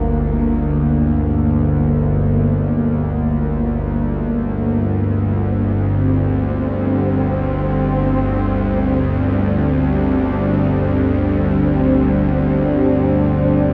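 From the first moment, a tense, string-like bowed drone sits up front with a sawtooth edge and vibrato, while an airy, bright pad with chorus sustains a G minor chord above it in free time, both bathed in a huge, cavernous reverb that gives this 13.7-second fragment of dark ambient drone its unsettling, shadowy weight.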